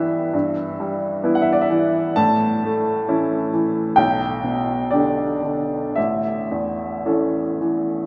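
Tender and serene, this brief excerpt of a romantic classical nocturne has a solo upright piano with a clear, woody, polished tone sitting up front, moving freely in rubato at around 54-68 BPM in 4/4 across a span from A1 to A5 through Em/G, A, G/B and A chords, all bathed in a long, wet cathedral reverb that hangs for about 5.1 seconds and gives a softened, hall-like glow.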